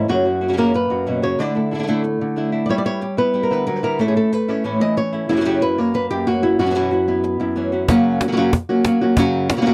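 Flamenco at a brisk 185 BPM in straight 4/4, this short passage cut from a longer piece feels intense and fiery. A dark, fingerpicked acoustic flamenco guitar carries the melody up front from start to finish, ranging from F#2 to D#5. A second fingerpicked flamenco guitar, warm-toned with audible finger squeak, plays stabs beneath it until 7.9 seconds as the harmony moves through F#, Dsus2, G6, A, F# and F#7sus4. At that point the harmony returns to F#, and a woody cajon with faint snares enters, close and dry up front, joining the melody guitar until the end at 9.7 seconds. The sound is a dry, close 1970s-style studio recording with light reverb.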